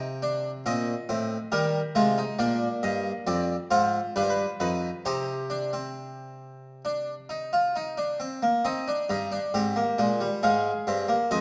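In a straight 4/4 pulse, this brief cut from a longer baroque-style four-part fugue for solo harpsichord feels both driving and contemplative, its airy, plucked Italian-style instrument sounding full on two sets of strings, placed up front under close, detailed microphones in a moderate recital-hall reverb, moving through a minor-key progression with a new section arriving at 8.7 seconds.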